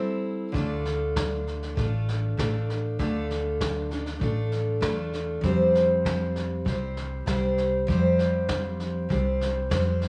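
Reflective and wistful, this short cut from a longer acoustic folk piece has the intimate feel of a duo or small band playing in a straight 4/4. A bright, full-bodied picked steel-string acoustic guitar sits up front and opens alone on an Am7 chord, its fresh strings showing the occasional finger squeak. At 0.5 seconds a woody pizzicato upright bass and a vintage brush drum kit join in as the harmony moves to Dm, then settles on Fsus2 at 5.4 seconds. The drums sit mid-forward with a punchy kick, a medium-tuned snare played with brushes, and a rolled-off top that keeps them soft behind the guitar. A moderate recital hall reverb and a small room ambience surround the players, while the worn, warbling cassette tape sound adds a warbly pitch drift that deepens the wistful mood.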